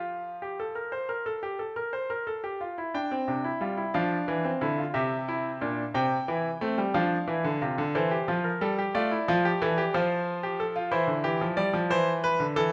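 Classical, a baroque-style three-part fugue for solo grand piano in F major, moving at a driving, serious 60 BPM in a straight 12/8 felt in dotted quarters. The polished concert grand sits up front with a deep bass and spans Bb2 to G5, its harmony shifting between F and C. A moderate recital hall reverb surrounds it, and a new section begins at 2.9 seconds in this short excerpt cut from a longer piece.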